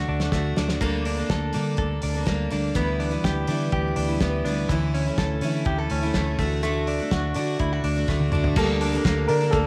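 This jangly indie pop clip, cut from a longer piece, moves at 124 BPM in a straight 4/4 in D major, with a bright, youthful mood. A picked steel-string jumbo acoustic with fresh strings and a full-bodied tone picks out the accompaniment, while an up-front, compressed clean electric guitar, recorded direct, plays arpeggios through tape echo. Underneath, a vintage foam-muted fingered electric bass sounds round and punchy, and a cloth-damped, thuddy drum kit in a small room brings a fat snare, tight kick and dark cymbals, with drum fills opening the clip and leading into the next passage. The chords move from D through Gmadd9/D, Em7/D and A/D back to D, and at 8.6 seconds a worn, reedy, slightly out-of-tune electric piano with fast tremolo slips in behind the band as the harmony returns to Gmadd9/D. At 9.3 seconds a dark, woody upright piano with audible action noise steps up front to carry a brief, intimate melody, all set in a moderate plate reverb with a layer of vinyl crackle.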